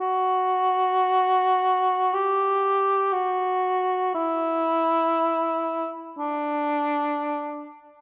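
A lone, mellow cor anglais sings from the first moment to 7.7 seconds, shaping a lonely, yearning classical line with light vibrato and a free, rubato feel within a narrow span from D4 to G4. The instrument sits up front in a concert hall with a moderate reverb tail, while the sound of worn, old cassette tape adds a warbly pitch drift. This brief excerpt is cut from a longer piece.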